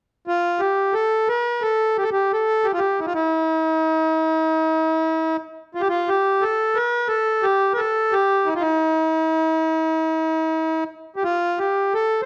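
Arabic music at a stately, festive 87 BPM in straight 4/4, where a solo accordion with a reedy, single-reed voice and dry tuning plays close-miked and up front from 0.3 to 12.3 seconds, set in a moderate recital-hall reverb and coloured by the warbling pitch drift of worn old cassette tape in this short cut from a longer piece.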